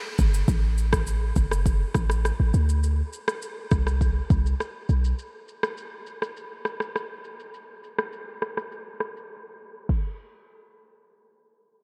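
This afrobeats clip features a boomy, sine-toned 808-style bass, sitting up front with a fast attack, a decaying tail and a faint noise layer over its low register from F#1 to D2. It plays from 0.2 to 5.1 seconds, and the mood is sultry and mellow at a straight 102 BPM in 4/4. An electronic afro-pop drum kit, also up front, runs from 0.2 to 10.0 seconds, pairing a deep kick with crash cymbal, rim click and shaker. A short break arrives at 9.3 seconds, before the music moves into a new section that carries on until the end. Light reverb, digital ambience and a low-pass filter give the mix a soft, rounded finish, and the clip is cut from a longer piece.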